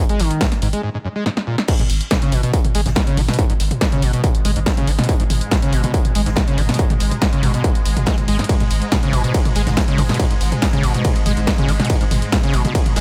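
Set in a digital ambience, this cut from a longer piece of driving, hypnotic peak-time techno pits a screaming, squelchy sawtooth acid line with distortion, chorus and tape echo against a deep, saturated sub bass, a punchy analog drum machine, a very quiet acoustic street-band kit of hi-hat and snare, and an overdriven electronic kick up front, with a short break and drum fill giving way to the drop at 1.7 seconds before a swarming, detuned granular drone enters at 3.7 seconds.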